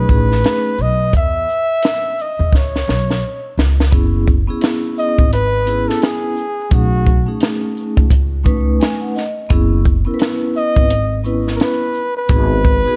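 A swung 86 BPM groove in 4/4 comes from a compact cocktail drum kit: dry and up front, with a punchy kick, high-tuned snare, hi-hat and shaker, all roughened by vintage 12-bit sampler grit. It drives this nocturnal, smoky jazz-hop excerpt and plays a fill at 2.5 seconds. A woody, growly pizzicato upright bass anchors chords moving from B13 through Bsus2 and F#9sus4 to G#m7, while a metallic, ringing vibraphone with medium mallets and a slow motor shimmer comps beneath and takes its own fill at 8.5 seconds; on top, a mellow, breathy flugelhorn solo with light vibrato and scooped notes carries the melody through tape echo, framed by small-room ambience and vinyl crackle.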